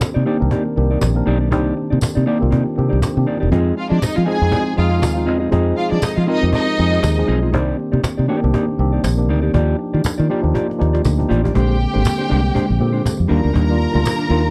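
A round, foam-muted fingered electric bass sits up front in this driving, sultry disco excerpt at 120 BPM in F dorian with a swung 16th feel, joined by a dark, clean electric guitar, a worn, slightly out-of-tune tine electric piano with subtle chorus, a woody cajon played with soft hands, and a jingly tambourine, while a lush studio violin section with vibrato enters at 3.8 seconds and returns at 11.6 seconds after a drum fill at 10.5 seconds, all captured in a dry, close 1970s-style small-room recording.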